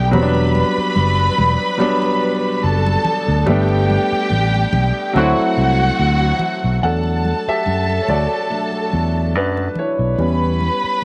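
Cinematic and silky, this lush 1970s-style soul excerpt moves at 72 BPM in E minor with a light sixteenth-note swing, as bowed, vibrato-rich strings and an up-front grand piano ride over a punchy fingered electric bass and damped, thick-skinned congas in the background, a distant, mellow horn section adds a brief stab at 5.2 seconds over the D7, and the piano steps forward for a solo from 6.8 seconds, all bathed in an echo chamber's roomy glow.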